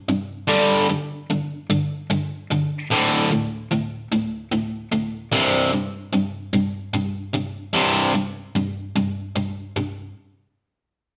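In a straight 6/8 lilt, this hopeful, cinematic rock fragment sets a lone electric guitar up front, bright and biting with picked, double-tracked overdrive, moving through G5, D5 and C5 as it rings into a wet stone room that carries the feel of a band playing live together.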